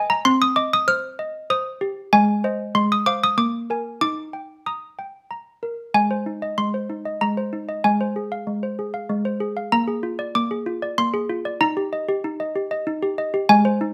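Malleted handbells play alone through this short, innocent classical lullaby excerpt in Eb major, their bright, bell-like tones struck with hard clappers and damped short, sounding close and up front across a full range from Ab3 to F6. The dreamy music sways in 3/4 at 95 BPM, moving from C minor through Ab, F minor and Bb7 to settle on Eb by 4.0 seconds, then traces Ab, F minor, Bb7 and Eb again with slower chord changes in a new section from 5.9 seconds. A moderate studio reverb surrounds the playing.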